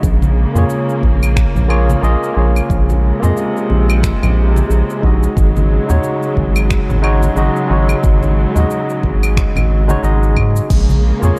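A swung 90 BPM groove in 4/4 drives this wistful sunset chillout piece in Bb minor, where a deep, tape-warm electronic kick sits in the background under a layered deep house kit of cabasa, claves, crash and finger snaps, very quiet soft-handed congas, a round, wave-folded analog bass up front, a barky, low-pass filtered tine electric piano with digital delay entering at 0.5 seconds, and a lush, bowed string section sustaining chords over a Bbm7 to Ab7sus4 progression, all in a dark production with light reverb.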